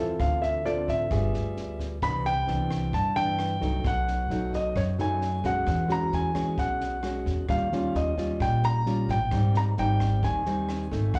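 A dark, mellow baby grand piano carries the melody from the first moment, with a thumb-plucked classical nylon-string guitar up front beside it, both touched by slapback echo, while a woody pizzicato upright bass with steel strings anchors the low end. A compact cocktail drum kit enters at 0.2 seconds, with a punchy kick, a high-tuned snare and rim clicks, giving this melancholic, smooth bossa nova fragment its pulse as the harmony drifts from Dm7 and G7b9 through Cmaj9 to Abmaj7. It sounds like a live club gig heard through the venue's PA, with light reverb and the long sustain of the piano hanging in the room before the cut at 11.2 seconds.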